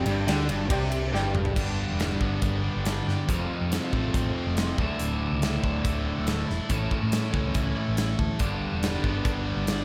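Classic rock at 140 BPM with a sunny, confident mood: two overdriven cranked stack guitars, one up front and one carrying slapback echo, drive the riff the whole way, joined by a round, dark hollow-body short-scale bass and a big rock drum kit with punchy kick and bright cymbals in a pumping room, while a worn, slightly detuned upright piano, a very quiet fat tonewheel organ with slow rotary and key click, and a double-tracked distorted guitar appear only in the opening 1.6 seconds before a drum fill launches the chords G, F, Dsus2 and A.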